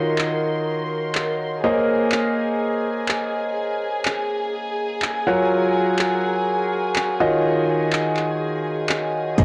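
Bittersweet yet energetic, this piano house fragment is cut from a longer piece and moves with a lightly swung 16th-note feel. A clear concert grand piano sits up front with a riff in its middle range, intimate and polished, with audible action noise and deep bass. Above it, a dark chamber string section holds sustained chords: soft-attack, sul tasto bowing with light vibrato and a smooth top. Both the piano and the strings pump with sidechain and carry a cassette-tape tint. From 0.2 s, a punchy analog drum machine adds handclaps and hi-hat up front, tape-warmed and re-recorded in a small room. The chords move from Ebm9 through Bbm11 and Gbmaj7 back to Ebm9. At 9.4 s, an electronic kick and a round, fast-attack FM bass arrive in the background, the bass driven by tube saturation and sidechain pumping. A moderate spring reverb and the home-cassette recording give the whole piece a lo-fi, close character.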